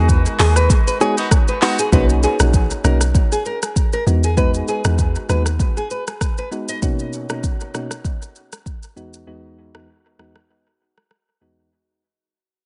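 Swung sixteenths at 98 BPM drive this romantic, joyful afrobeats passage, where an up-front electronic drum kit with a deep kick, metallic hats, handclaps, rim clicks and shaker is joined by a round, percussive log drum bass carrying its own dark noise layer. In a brief band accent over Emaj9, a bright, clean, direct-recorded electric guitar plays a short vibrato-tinged melody with dub echo, while a tight woodwind section holds sustained chords and a loose horn section adds a clear second line, both set back in the mix. From 1.9 seconds the piece fades out across Bmaj7 and Emaj9, carried by mellow, chorused electric-piano-like synth keys and a small, fingerpicked nylon-string guitar riff; the bass drops out at 5.6 seconds and the guitar riff at 6.8, all within an echo-heavy, lightly reverberant mix.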